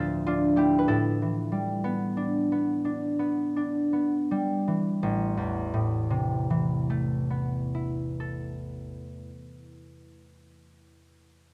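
A solo concert harp, fingerpicked and up front with a warm, ringing tone, carries this brief classical fragment cut from a longer piece, spanning low A1 up to D5 in 6/8 with free, rubato timing. The mood is wistful and mysterious: the opening slows over its first 5.1 seconds, then the music settles into a new passage on an Amadd9 chord. Close, detailed microphones catch every string, set in light reverb.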